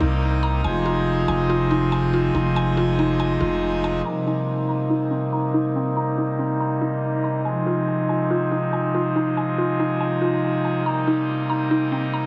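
A hazy, melancholic hip hop fragment in C minor, cut from a longer piece, moving at 141 BPM in 4/4 with a half-time feel. A full pipe organ sits up front, holding majestic, brilliant chords with mixtures and a romantic voicing, softened by a low-pass filter and moving between Cm7 and Fm7. Above it, a woody, round, mallet-like FM pluck with a noise layer plays arpeggios throughout, its fast attack and short decay colored by chorus, a low-pass filter and tape echo. A deep, mellow, sine-toned 808-style bass with a fast attack sustains and decays under the opening, then drops out at 4.0 seconds. From that point a filter sweep runs through the rest of the passage to 12.3 seconds as the chords return to Cm7. A huge ambient reverb with a long 8.3-second tail gives the whole passage a vast, drifting space.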